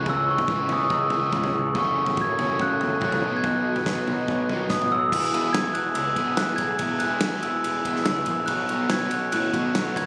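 Caught on a phone in a small room and finished with studio reverb and compression, this cut from a longer indie rock piece feels jangly and carefree at 143 BPM in 4/4, in E major. A mellow, bell-like glockenspiel played with rubber mallets carries the melody up front, over riffs from a slightly broken-up, lo-fi electric guitar through a small old amp in the background and an overdriven guitar with ensemble chorus, while a punchy fuzz bass and a loose acoustic kit with a tight kick, a medium-tuned snare, toms, ride and crash drive underneath. A very quiet, airy, breathy pad of sustained detuned chords enters at 1.8 s, and at 5.1 s the harmony moves from C#m, F#m and B to E and Badd9.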